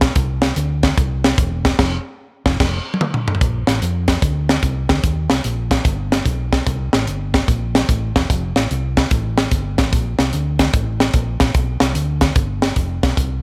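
Hopeful and uplifting, this uptempo gospel groove moves at 148 BPM in 4/4 with a swung eighth-note feel in Bb major. A tight funk drum kit sits up front in a small room, its high-tuned snare and tight kick mid-forward against crash, hi-hat and toms, while a hollow-body short-scale electric bass, fingered and amped, supplies a dark, round, punchy low end under light reverb. The full band hits an accent from 1.8 s, a drum fill joins it at 2.6 s, and a new section begins at 3.4 s and runs to the close of this excerpt.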